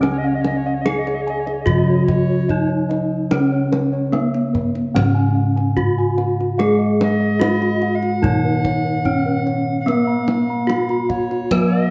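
A bright bronze metallophone, struck with a horn mallet, leads this serene, shimmering Javanese gamelan excerpt; its paired tuning produces shimmering beats, and it sits close and up front. A second metallophone, played with a wooden mallet, supplies a dark, smooth accompaniment beneath it. Two sets of bossed gongs sound round and beating, one spinning high arpeggios and the other carrying the bass. A deep kendang adds compressed, saturated percussion, and a reedy alto recorder with a crisp chiff enters at 0.1 s as a distant second line. The music moves at a steady 73 BPM in 4/4, in Db slendro tuned to A4 = 438 Hz, with a dark production and a moderate scoring-stage reverb across the 11.9 seconds cut from a longer piece.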